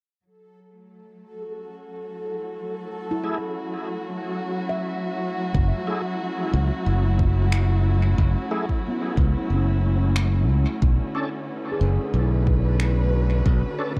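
An echo-heavy, dry-roomed ambient dub excerpt in F# minor at 91 BPM, meditative and hazy, opens with dark, bowed chamber strings fading in on sustained chords beside a bubbling, detuned sawtooth texture with random filter steps, chorus and built-in reverb, before a mellow stainless-steel handpan with soft fingertips plays filtered, tape-echoed arpeggios in the background and a gritty, overdriven tonewheel organ adds stabs through slow rotary speaker and dub echo, until at 5.5 seconds a growly, up-front fingered electric bass and a deep, tape-warm electronic kick enter, joined at 7.5 seconds by dub-echoed electronic finger snaps as the handpan is swept by a filter and the chords move from F#m7 to Bm9.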